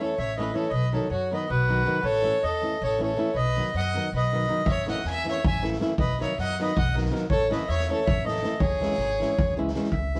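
Set in a straight 7/8, this restless, fiery Balkan wedding-band piece is cut from a longer performance, with a reedy, up-front accordion carrying the melody over a biting, bowed violin second line with light vibrato. A fingerpicked flamenco guitar and a woody pizzicato upright bass move between A and B chords before a closing turn to C sharp minor, and a street-band drum kit with a boomy kick and medium-tuned snare joins at 4.7 seconds. The band plays live together in a stone room with moderate reverb.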